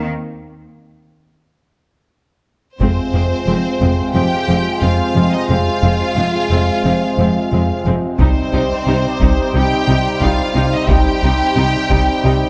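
A brooding, tense hybrid orchestral and electronic film cue opens with a mellow French horn section and an airy, chorused synth pad holding sustained chords over a very quiet, close cello bass line. At 2.8 seconds the full ensemble arrives: a clear studio violin section carries the melody above a lush second violin line, a smooth viola accompaniment and distant, brilliant trombone chords, while a rubbery, hollow square-wave bass riff and a bowed double bass section anchor the low end. Taiko drums with hard sticks play briefly until 4.1 seconds and return from 8.2 seconds under a moderate scoring stage reverb.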